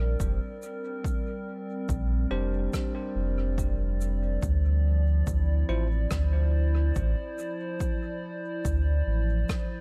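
A hazy, meditative stretch of ambient dub cut from a longer piece, where a warbling, nostalgic pad with chorus and built-in reverb holds sustained chords over a deep, round sub bass, a punchy electronic kick and a smooth, dark shaker and rim click carrying dub echo, while bell-like tine electric piano stabs, also trailed by dub echo, surface between 2.3 and 5.9 seconds, all in a dark small-room production.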